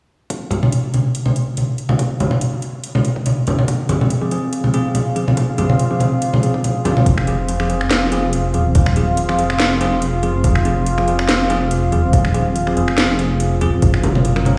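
A swung half-time pulse at 142 BPM opens this meditative, cavernous deep dubstep excerpt in F phrygian, where a punchy, up-front electronic kick and a tape-toned garage kit of finger snaps, metallic hats and a cracking snare sit beneath bright, hard-handed congas trailed by dub echo, while bell-like electric piano stabs, also echoed, and a moody, chorused ambient pad gather over Fm before the kick drops out at 6.6 s and a rumbling, beating detuned saw bass with tube saturation arrives at 7.1 s, all set in a stone-room reverb that sounds like a big sound system in a bare chamber.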